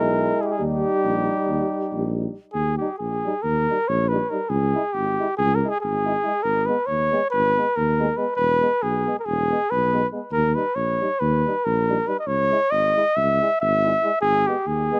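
A mellow, close-miked flugelhorn with light vibrato carries the melody up front in this restless, fiery Balkan brass band piece in 9/8 at 278 BPM in Eb phrygian dominant, over a smooth-topped tuba bass, a dark trombone with light vibrato in the background, and a distant, soft-attacked euphonium with vibrato and slapback echo, all played in a classical style with a dry outdoor sound in a passage cut from a longer piece.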